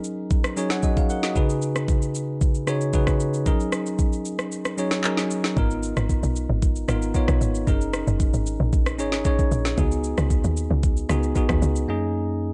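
A bell-like tine electric piano and a smooth R&B drum kit open this hypnotic, soulful amapiano excerpt together at 114 BPM in a straight 4/4, with the piano playing a short fill from 0.3 to 1.4 seconds. The bright, clean keys sit up front as accompaniment, moving through lush extended chords such as F#69, C#7sus4 and G#m69. The electronic kit, tape-tinged and close, brings a knocking kick, woody snare, rim clicks, handclaps and shaker, and its kick drops out briefly before the tight log drum bass arrives at 5.6 seconds. That bass is punchy and percussive, an FM sound with a noise layer, a fast attack and a decaying tail, sitting prominently in the low register. The drums and bass stop together at 11.9 seconds, leaving a short break, and the whole track has a dark, warm production bathed in digital ambience.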